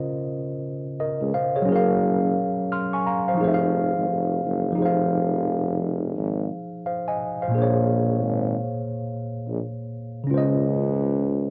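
Lo-fi hip hop with a reflective, nostalgic mood, this short passage is cut from a longer piece and moves with a relaxed swing in four. A worn tine electric piano opens at 0.0 seconds, sitting up front with a direct, slightly out-of-tune voice that is dulled by cassette tape coloring and a low-pass filter. At 1.2 seconds a tuba enters on the bass line, up front and vintage in character, with a soft attack and a jazz-style feel. The harmony drifts through Dbmaj7, Gbmaj7 and Fm7 before shifting to Bbm7 and settling back on Dbmaj7, with a new section beginning at 4.8 seconds. A moderate spring reverb and a home cassette recording give the whole track a warm, intimate, lived-in sound.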